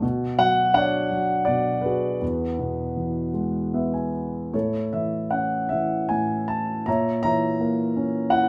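Classical solo piano in A major, peaceful and tender, moving in a flexible rubato 3/4 at around 74-84 BPM through Bmadd9, Eadd9, A and A#dim harmonies. A warm concert grand with a deep bass sits up front throughout this brief 8.5-second passage from a longer piece, adding a fill between 3.3 and 4.5 seconds. Close, detailed miking and light reverb keep the sound intimate.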